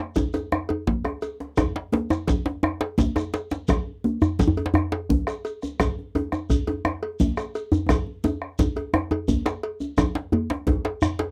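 A driving, powerful 12/8 pulse at 114 BPM carries this West African traditional drum ensemble excerpt, where a deep, dark bombo and a medium-tuned, soft-handed djembe sit up front beside bright, high-tuned congas, a metallic cowbell, a grainy shekere and a second djembe buzzing with metal rattles in the background, with drum fills at 0.9 and 7.9 seconds in a dry, close 1970s-style booth sound.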